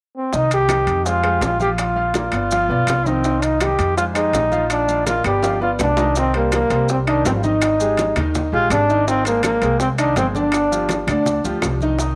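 A bright, up-front solo trombone with tape echo carries the melody in this fiery, danceable salsa excerpt in C minor at 165 BPM, over a brilliant upright piano, a thumpy pizzicato upright bass, grainy maracas, and background bongos, congas, ringing saturated timbales and very quiet woody claves, with a drum fill at 5.4 seconds leading into a second section where the chords move from Cm through Abmaj9#11 to G5, all in a moderate echo-chamber reverb.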